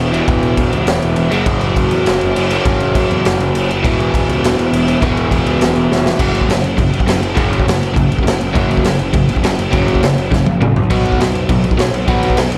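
Energetic and rowdy, this punk rock excerpt charges along at 204 BPM in straight 4/4, opening in a half-time feel before the full drive arrives at 6.2 seconds. A bright, overdriven electric guitar carries the riff from the start, picked and double-tracked so it sits up front, moving through power chords on E, F# and B. Beneath it, a fuzz-laden picked electric bass growls in the low register. The raw garage drum kit hits with a punchy kick, a medium-tuned snare, toms and dark crash cymbals, its sound gritty and saturated with a rolled-off top and a pumping small-room character. Drum fills land at 5.9 seconds and again around 10.3 seconds, and light reverb places the whole band in a compact, close-up space.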